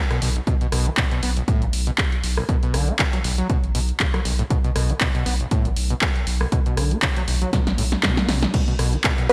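Acid house at 119 BPM in B minor, this trippy, hypnotic cut from a longer piece rides a 4/4 groove with a light 16th-note swing. A squelchy, resonant sawtooth acid bass carries the riff from the start, its gritty tone shaped by distortion, tube saturation, lush chorus, cassette tape coloring and digital delay. Beneath it, a deep sine sub bass pumps against the sidechain while an electronic kick drum, punchy and tape-warm, enters at 0.5 seconds. An up-front analog drum machine supplies snare, handclaps, hi-hat, rim click and crash cymbal through gated reverb, with a drum fill between 7.5 and 8.5 seconds. At 9.3 seconds a muted, detuned dub chord stab lands with a moving notch and phaser, mellow and evolving, closing the passage inside a bright 1980s-style digital production with light reverb.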